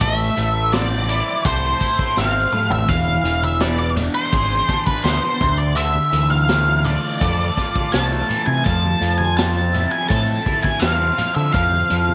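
Hypnotic and mysterious, this psychedelic rock excerpt moves at a steady 83 BPM in 4/4, passing through Am, E7, Dmadd9 and Fmaj7. An up-front octave-fuzz lead guitar carries the melody with distortion and slapback echo, over a bright, double-tracked crunchy guitar riff coloured by phaser and a round, growling picked bass with overdrive. A vintage drum kit with a punchy kick and rolled-off top plays a fill at 2.2 seconds, and very quiet, damped congas join at 3.1 seconds, all set in a light studio reverb.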